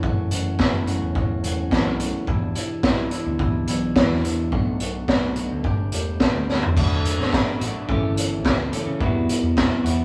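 A raw garage drum kit sits up front in this jangly, carefree indie rock excerpt at 107 BPM in 4/4. Its gritty, saturated sound is built on a boomy kick, a high-tuned snare, hi-hat, crash cymbal and toms, with a rolled-off top. A clean, twangy electric guitar plays a compressed, picked riff throughout, while a growling picked electric bass with overdrive holds down the low end. The opening passage moves through F#m7, Em7, Bm7 and Gsus2 before a drum fill at 6.5 seconds leads into a new section at 6.8 seconds. There a twelve-string electric guitar enters in the background with its own picked riff as the chords shift to D, A7 and Emadd9. The band sounds as if it is playing live together in a small room, with light reverb adding a touch of ambience.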